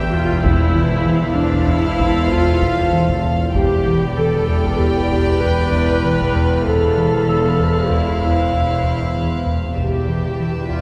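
Soft-attack sul tasto strings open this tense, uneasy suspense film cue at 96 BPM in 5/4, with a rich chamber violin section carrying the high melody over a symphonic violin second line, an intimate vibrato viola section and a background violin texture up high, while a distant cello and double bass section hold a low E beneath a dark French horn section's sustained chords, a string-like drone and a sweet, bell-like celesta; a round analog bass riff with ring modulation enters at 0.1 s, a taiko ensemble and very quiet timpani join at 0.4 s, and the whole cue sits in a church reverb over Fmaj7/E and Em7 chords.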